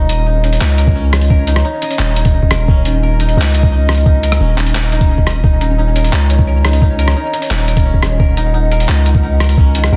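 A deep, sine-toned 808-style bass sits up front in this tense, heavy half-time drum and bass excerpt at 174 BPM in Eb minor, beneath woody, fingerpicked koto arpeggios roughened by vintage 12-bit sampler grit and digital delay, a detuned, pulsing gated triangle texture with chorus and reverb in the background, a pitched-down, gritty boom bap sampler-style kit of handclaps, hi-hat and rim click with soft clipping on the snare, and a thumpy, tape-warm electronic kick that enters at 0.9 s, all in a dense, heavily limited modern mix with little room sound.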